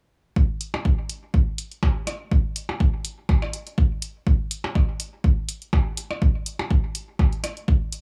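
A clinical, quirky, lightly swung minimal techno fragment cut from a longer piece, built on a punchy, tape-warm analog kick drum up front from 0.4 seconds, an electronic hi-hat from 0.6 seconds, and overdriven percussion blips with analog delay from 0.7 seconds, all captured in a dry, gritty hardware recording.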